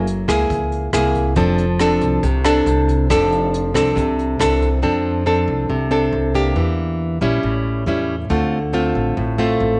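Sunny and romantic, this bossa nova excerpt in F major moves at 138 BPM in a straight 4/4, with a bright, fingerpicked classical nylon-string guitar up front over a woody pizzicato upright bass, while an airy brushed jazz kit with a boomy kick, hi-hat and rim click plays only until 4.7 s, all set in a small room with moderate echo-chamber reverb and a top end that tops out around 10.4 kHz as the harmony moves from Gb9 to F6 and later through Em7b5, A7 and Dm7 in the second section starting at 4.8 s.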